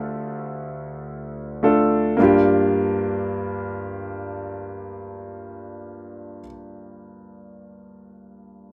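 Emotional and longing, this short pop fragment in G minor unfolds at a slow 54 BPM in a straight 4/4. A single concert grand piano carries the accompaniment from start to finish, spanning D2 to A4 with a deep low end. Its tone is clear, intimate and polished, sitting up front in the mix, and the clatter of the instrument's action is audible. The opening passage slows down over its first 2.2 seconds on a D minor chord, then settles onto G minor seventh for the next section, which runs until 6.6 seconds. A small room adds moderate reverb around the piano, and the overall sound has the rough character of a home demo, cut from a longer piece.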